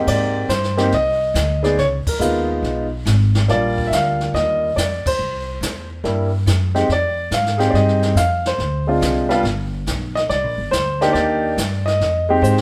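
A warm concert grand piano carries the melody up front in this sophisticated, playful jazz piano trio excerpt, its intimate, polished tone showing deep bass, long sustain and audible action noise as it ranges from Ab2 to F5. Beneath it, a woody pizzicato upright bass on steel strings sits close in the mix, holding the low end between G1 and Ab2. The brushed drum kit sounds distant and roomy, with dark cymbals, a medium-tuned snare and a boomy kick, entering at 0.1 seconds. The tune swings at 141 BPM in 4/4, moving through lush harmony from Abmaj9 and Db9 to Ebmaj9, then a minor turn through Fm7, Dm7b5 and G to Cm9. The band hits accents together at 2.0 and 5.0 seconds, and a drum fill at 12.4 seconds closes the passage. Moderate studio reverb gives the trio the feel of players performing live in one room.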